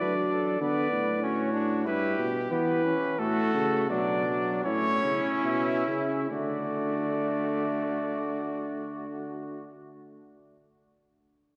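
In a straight 4/4 that eases from 101 down toward 67 BPM over the first 6.3 seconds, this elegant, lively excerpt of a classical imitative canzona in D major sets a pair of mellow trumpets, the up-front lead with a soft attack carrying the melody over a second line, alongside a bright trombone accompaniment and a clear, vintage-toned tuba bass placed up front, each voice touched with light vibrato, moving through D, Bm, Em/G, D/A and A before a new section opens on D at 6.3 seconds, all inside a dark production with a 3.0-second church reverb.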